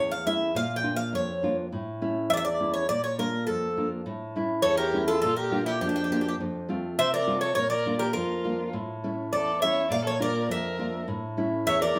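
Greek folk music in a moody, bittersweet vein, heard here as a short cut from a longer piece in a straight two-beat metre. A bright, metallic bouzouki carries the melody up front, its picked double strings ringing with some octave-doubled courses. Beside it, a dark nylon-string guitar is fingerpicked in classical style, holding down the accompaniment from its low register and shifting mostly between A and B-flat, with a turn to F in the middle. At 4.6 seconds a single bowed violin joins with a second line, its warm tone shaped by vibrato, portamento and a smooth top end. The trio sounds like a band playing live in one room, wrapped in a wet large-studio reverb.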